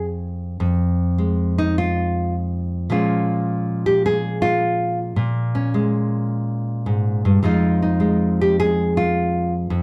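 A swung 4/4 pulse at 106 BPM carries this short, moody solo jazz passage in F minor, cut from a longer piece. A lone nylon-string guitar, fingerpicked in a classical manner and placed up front, plays from F2 to Ab4 across the full 9.8 seconds, moving from Fm to Bbm7 at 2.9 seconds and to Fm7 at 7.4 seconds. Light reverb and a dark production frame the instrument's acoustic, warm tone.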